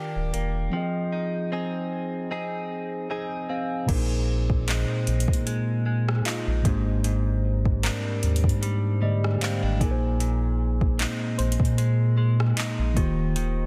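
Tender and dreamy, this contemporary R&B excerpt moves at 76 BPM in 4/4 with a light swing on the sixteenths. A mellow tine electric piano carries the chords through a phaser and adds short fills at 2.7 seconds and again later. A clean, direct-recorded electric guitar picks arpeggios colored by subtle chorus and tape echo. A round sine sub bass sits deep underneath, and an up-front electronic drum kit with a gentle kick, metallic hi-hats, rim clicks, handclaps and crash cymbal keeps the groove. At 3.9 seconds a dark, wave-folded pluck enters quietly in the background with chorus and tape echo as the harmony moves from Ebmaj7 and Fm7 toward Bb9sus4 and Abmaj9#11, settling on Eb69 at 13.0 seconds. The mix is dry, dense and heavily limited in a modern style.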